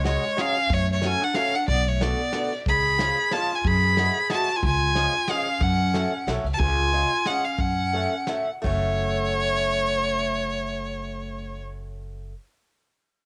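A bittersweet, nostalgic musette waltz in 3/4 and F# harmonic minor moves at a lilting swung pace between 161 and 185 BPM, heard here as a short cut from a longer piece with a cassette-tape home-recording character, light reverb and studio ambience. A clear, focused bowed violin carries the melody up front and close, with vibrato coloring its line. A clarinet plays a distant, roomy second line beneath it, while a bright, boxy picked swing-style acoustic guitar supplies the accompaniment. The woody, thumpy pizzicato upright bass anchors the harmony, which moves through chords such as F#m, Bm7 and C#. A soft brush drum kit with dark cymbals and a punchy kick sits in the background until it drops out at 8.7 seconds, after the tempo slows between 6.6 and 8.6 seconds.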